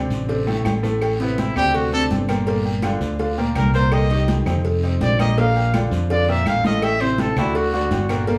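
A sunny, lively Afro-Cuban jazz passage in D minor at 165 BPM opens with an intimate baby grand piano, its action noise audible, over a dark, round fingered electric bass up front, as very quiet ringing congas and a raspy guiro join a tight high-tuned cowbell, metal-shelled agogo bells and timbales and woody claves sitting in the background, and a distant, roomy trumpet with light vibrato takes the jazz solo from 1.2 s, heard from further back in a small room with a faint mains hum.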